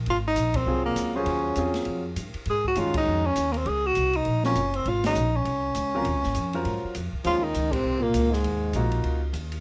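A swung 4/4 pulse at 201 BPM drives this hypnotic, intense modal jazz excerpt in Eb dorian, with band accents punctuating the groove. The open jazz drum kit, heard in a small room, keeps time on ride cymbal, hi-hat, snare and a boomy kick, its dark cymbals sitting low in the mix. An up-front pizzicato upright bass with a woody tone anchors the harmony as it moves between Eb9sus4 and Ab9sus4, and a clear concert grand piano with deep bass comps from 0.7 seconds. A warm tenor saxophone carries the melody up front, with light vibrato and a smooth top. At 7.2 seconds a second, close-miked tenor saxophone with scooped notes and vibrato adds a lower line as the chords return to Eb9sus4, the band set in a light reverb.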